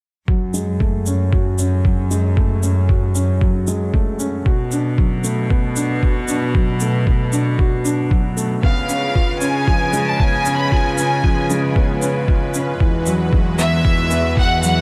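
A felt-muted upright piano anchors this hypnotic, cinematic piano-and-strings electronica in F# minor, its soft, mellow riff carrying audible action noise and passing through tape echo, shimmer reverb and a filter sweep across the whole passage. Beneath it, a close chamber cello section holds the bass with a reedy, gut-string tone that pumps against the sidechain, while a compressed, pitched-down electronic kick thumps up front at 115 BPM in a straight 4/4. An overdriven electronic shaker adds texture from a roomier space. At 8.6 seconds a clear chamber violin section enters with a biting, earthy melody high in its range, lightly touched with vibrato and shimmer reverb, alongside a lush, detuned sawtooth pad that spreads slow-attack sustained chords through chorus. The harmony moves from F#madd9 through Bm7 and C#7 to Eadd9 in this cut from a longer piece.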